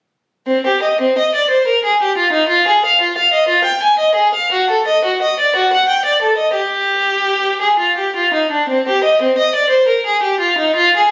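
A single bowed violin carries this solemn, grave baroque-style suite movement alone from 0.5 to 11.1 s, its rich, smooth tone shaded with vibrato and placed up front. In C minor and 6/8 at around 58 dotted-quarter beats per minute, the line moves with uneven beats and free rubato across a range from C4 to Ab5. Captured on a phone in the room and given a moderate studio reverb, this short fragment of a longer piece keeps an even sound.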